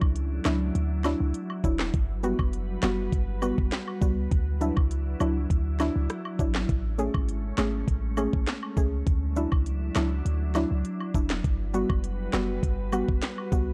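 Bouncy and summery, this dancehall cut moves at 101 BPM in a straight 4/4, with an electronic island pop drum kit up front: knocking kick, sharp snare, smooth hats, handclaps and rim clicks, dusted with close, acoustic woodblock and cabasa. A deep, boomy 808-style bass sits up front, while a glassy, warbling FM pad holds sustained chords with ensemble chorus, built-in reverb and sidechain pumping, and a soft, round pluck enters at 0.5 s with chorus and its own pumping. The chords cycle through Dadd9, Gmaj7 and Amaj7, and the whole excerpt has a dry, gritty cassette-tape character.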